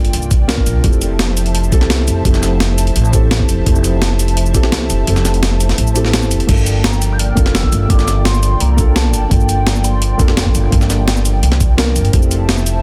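A woody, up-front upright bass anchors this warm, uplifting liquid drum and bass excerpt, paired with a gritty, thumpy electronic kick that drops out from 5.1 to 6.5 seconds, and a compressed breakbeat kit of snare, hi-hat, shaker and crash. A felt-muted upright piano with audible action noise and delay plays intimate accompaniment over an airy, breathy pad whose sustained chords pump with sidechain and shimmer with chorus, moving between Gm7 and Fmaj7. From 6.8 to 10.2 seconds a hollow, warbling clarinet-like synth lead with vibrato sits in the background, and the dense, heavily limited mix stays dry.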